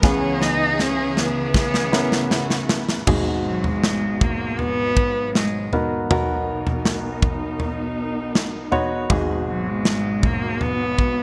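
A drum fill on a modern studio kit, with a tight kick and crash, opens this emotional, hopeful pop ballad excerpt alongside a warm, bowed cello melody with vibrato, a clear, polished baby grand piano, veiled muted strings holding sustained chords in the background and a lush violin section with delay that drops out at 3.1 seconds, all set in moderate plate reverb with a bright 1980s-style digital sheen over chords moving from C#m7 through G#m7 and Bmaj7.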